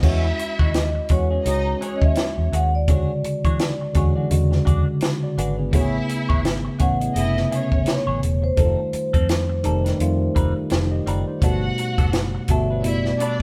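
A moderate stone-room reverb wraps this lush, romantic 1970s-style soul piece, cut from a longer work, at 84 BPM in E major with a swung sixteenth feel, where a mellow, ringing soft-mallet vibraphone with slow motor vibrato carries the melody over a bowed studio string section with expressive portamento, a worn, slightly out-of-tune tine electric piano through a combo amp, a clean, picked electric guitar riff through wah, a dark, round, foam-muted fingered bass, and a dry, punchy cocktail drum kit with a high-tuned snare up front, as the chords move from E69 through Amaj9 and F9 to Gmaj9.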